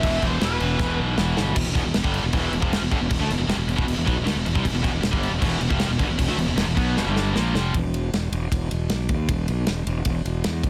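A growly, punchy fingered electric bass with fuzz and overdrive sits up front in this relentless, epic heavy metal excerpt, played at 156 BPM in a straight 4/4 and tuned to A4 = 436 Hz. A modern studio drum kit, mid-forward and up front with a punchy kick and medium-tuned snare, drives alongside it on kick, snare, ride and crash, with fills leading into the 1.6-second mark and again just before the guitars stop. Two picked guitar riffs, one bright and overdriven and the other high-gain and set back in the mix, play until 7.7 seconds, while a thick, double-tracked fuzz guitar sits very quietly beneath them for the first 1.6 seconds and again from 4.6 seconds onward. A dark, smooth lead guitar with overdrive and digital delay plays a brief melody only in the opening second. The harmony moves from E5 to E minor and back to E5, and after 7.7 seconds bass and drums carry on alone in a small room ambience with a dense, heavily limited modern master.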